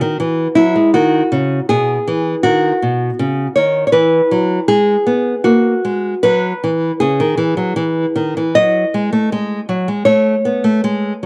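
With a home cassette recording's small-room ambience and light reverb, a lone nylon-string guitar, bright, fresh-strung and up front, fingerpicks a radiant, serene baroque-style classical dance at a rubato 80 BPM in 4/4, tuned to A4 = 437 Hz, moving through B, E, C#m and F#m/A harmonies across this 11.3-second fragment cut from a longer piece.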